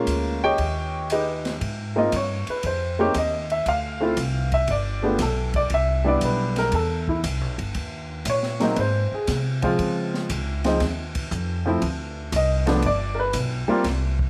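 Swung eighths in 4/4 carry this relaxed jazz piano trio fragment, taken from a longer piece, with an open acoustic drum kit of hi-hat, ride cymbal, a high-tuned snare and a boomy kick sitting behind the other two parts. Up front, a woody, dark pizzicato upright bass on steel strings anchors the low end, while a warm, present baby grand piano carries the melody and moves into a solo at 1.6 seconds over changes such as Ab6, Cmaj7 and Dbmaj7. Light reverb and a small room ambience give the trio an intimate, close feel.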